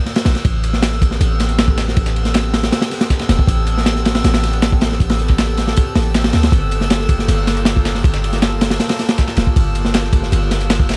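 A faint, glassy texture of drifting overtones opens this nostalgic, atmospheric drum and bass cut in A minor, sitting calmly in the background with chorus and its own reverb. A crunchy breakbeat kit arrives at 0.1 seconds, up front and saturated, with a tight kick, medium-tuned snare and dark ride cymbal driving a straight 158 BPM in 4/4. A deep, boomy 808-style bass with a fast attack and decaying sine tone joins, while a compressed, tape-warm sampler-style kit adds filtered hi-hat and snare far behind the main breaks. From 0.7 seconds a warbling, detuned lo-fi pad holds sustained chords, slow to bloom and long to fade, moving from Am9 to Gm9 at 6.5 seconds. Vinyl crackle and studio reverb lend the whole fragment a dusty, hazy sheen.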